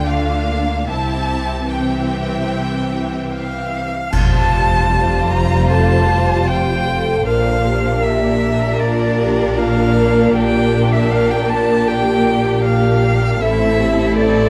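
A distant solo violin, expressive with vibrato and portamento, enters at 3.3 s to carry the melody of this moving, uplifting cinematic film-score excerpt, joined by a pure-toned small flute group on a second line in the background. Beneath it, lush bowed violin sections, smooth violas and cellos, and close double basses play from the start with a rubato, unevenly paced feel, while bright clash cymbals with concert bass drum mark an accent at 4.1 s. Mellow French horns add sustained chords from 5.7 s, and a moderate concert hall reverb gives the orchestra a spacious sense of depth.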